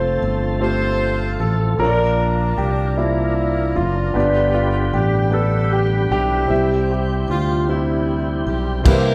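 A moderate recital-hall reverb gives this short cut from a longer slow gospel piece a roomy, churchlike sound. At 51 BPM in a straight 6/8, it feels jubilant and uplifting as it moves from F through Bb and G to C. A clear, polished concert grand piano with long sustain and audible action noise carries the melody until 8.5 s, alongside a tight saxophone section with light, jazz-style vibrato. Beneath them, a woody, vintage upright piano supplies intimate accompaniment, and a full tonewheel organ holds sustained chords through a slow rotary speaker with light overdrive and chorus vibrato. A punchy fingered electric bass sits up front in the low register. At 8.9 s a dry funk drum kit lands a single hit of bright crash cymbal and tight kick.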